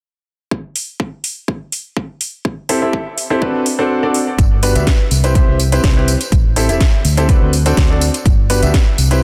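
Piano house at 124 BPM in G major, uplifting and euphoric, where a punchy, up-front electronic kick enters at 0.5 seconds, joined at 0.8 seconds by a house kit of cracking snare, metallic hi-hats and tambourine; a clear, woody upright piano riff with sidechain pumping and digital delay joins at 2.7 seconds over Am7 and D7 chords; and after the kick briefly drops out, a foam-muted, tube-saturated fingered electric bass arrives at 4.4 seconds, set in light digital ambience with a dense, heavily limited modern master.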